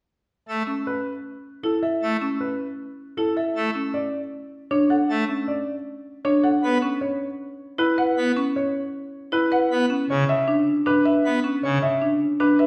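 A majestic, brilliant full pipe organ opens the music at 0.5 s with low accompaniment, and a woody, percussive marimba played with hard mallets joins almost at once with arpeggios. A clear grand piano carries the melody above them in this urgent, hypnotic stretch of minimalist classical pattern music at 156 BPM, with the harmony moving from A through Dmaj7(no3) and C#m7 to E5. The organ drops out at 11.8 s while the marimba and piano continue to the cut, all set back in a large studio with a lush reverb.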